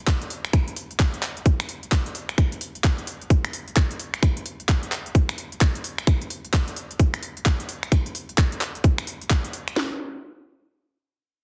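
A tight kick and cracking snare from an electronic garage drum kit sit up front in this swaggering, bouncy house cut with swung 16ths, joined by a quieter layer of crisp hi-hats, finger snaps and handclaps with soft clipping on its snare; both parts carry a tape-warm, re-recorded large-room character, play until about 9.9 and 9.7 seconds respectively, and sit in a dense, heavily limited master with little reverb.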